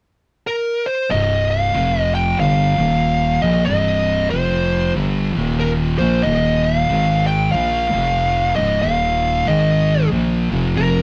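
This ominous, hypnotic metal excerpt opens with a dark, compressed fuzz lead guitar carrying the melody alone from 0.5 seconds, picked up front in a high register. At 1.1 seconds two thick fuzz guitars enter on a low, picked riff, one of them set further back, alongside a growling FM bass with a sine-based tone, fast attack and sustained notes sitting up front. The groove moves at 93 BPM in 4/4 with a swung eighth-note feel, and the harmony circles from C minor through heavy power chords on F, E-flat, A-flat and B-flat, with passing colours like Bbsus2 and a closing Fsus4. The distortion on the guitars and the overdriven bass give the sound a murky, saturated weight. A moderate stone-room reverb and the rough quality of a rehearsal-room recording leave the whole thing raw and roomy.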